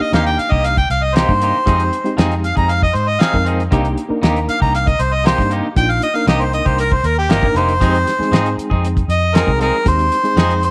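An up-front, close-miked overdriven harmonica solos with scooped notes and light vibrato through this brooding, soulful straight-eighth soul blues fragment at 117 BPM in C minor, moving between Cm7 and Fm7 over a reedy, worn, slightly out-of-tune electric piano with fast tremolo, a round, foam-muted vintage fingered bass, twangy clean guitar stabs with vibrato and slapback echo, and a dry, cloth-damped drum kit with a fat snare and tight kick, all set in light studio reverb.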